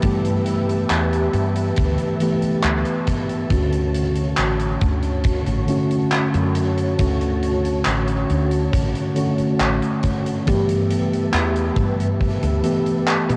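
A straight, unhurried 4/4 pulse comes from a huge arena drum kit of handclaps and hi-hat, its acoustic hall sound softened by cassette tape, while a punchy kick drum sits in the background until it drops out at 12.4 s. This short, dreamy and nostalgic vaporwave cut drifts from G69 to Dmaj7 and back to G69. Up front, a mellow, clean tine electric piano carries the accompaniment through lush chorus, analog delay, tape wear and a vintage 12-bit sampler grit. Beneath it, a woody fretless electric bass sounds dark, round and hollow-bodied, also bathed in lush chorus. A silky string machine holds slow-attack chords higher up, its pulse and sawtooth tones shimmering through phaser and ensemble chorus. The whole piece has the intimate air of a home recording on cassette in a small room.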